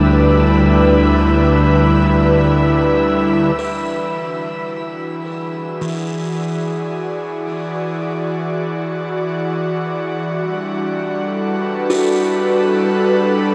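Ambient music, peaceful and luminous, moves at a slow 54 BPM in 3/4 with a straight feel, heard as a passage cut from a longer piece. An airy, breathy pad with chorus sits up front throughout, holding sustained chords from D3 to D5 that begin on Em7/D, shift to E7 at 3.6 seconds and settle on Gmaj7 at 10.2 seconds. Beneath it at the opening, a dark, bowed double bass section plays sul tasto with light vibrato on a low D2, alongside a faint wind-like tuned noise texture with its own built-in reverb in the background. Both stop near 3.6 seconds, when a buzzing, woody kalimba fades in with mellow fingertip-plucked arpeggios spanning E3 to B4, trailed by a diffuse ambient delay, while the pad also fades in from there. A wet shimmer reverb with a 7.5-second tail and a cassette-tape character give the whole a soft, hazy glow.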